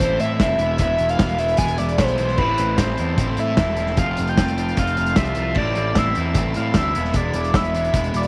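A restless, cool indie rock passage opens with every part at once, led by a screaming, guitar-like synth lead whose sawtooth grit is coloured by distortion, phaser, tape echo and a touch of vibrato. Up front, a loose acoustic drum kit gives a muffled, lo-fi small-room sound, with dark cymbals, a punchy kick and a medium-tuned snare. A growly fuzz bass, picked and overdriven, also sits forward, while two guitars carry riffs: one bright and compressed, washed in lush chorus and tape echo, the other a raw garage part with spring reverb, set in the background. A very quiet tonewheel organ holds piping, scooped chords through a slow rotary speaker. The harmony circles Amadd9, E and Fadd9 across this 8.3-second fragment of a longer piece, all set in light studio reverb.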